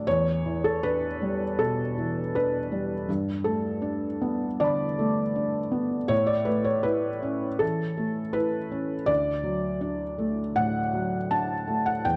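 A dark, warm production with light reverb frames this tender, intimate excerpt of neoclassical minimalist piano, cut from a longer piece. A felt-muted upright piano plays alone throughout its 12.2 seconds, sitting up front with a soft, mellow tone and spanning from D2 to D6. The tempo is about 80 BPM in 4/4, though the playing moves with a rubato feel that lets time breathe. In D major, the harmony steps through Em7, Gadd9 and A before settling on D at 9.1 seconds. The muted felt gives each note a close, private quality, as if heard from beside the instrument.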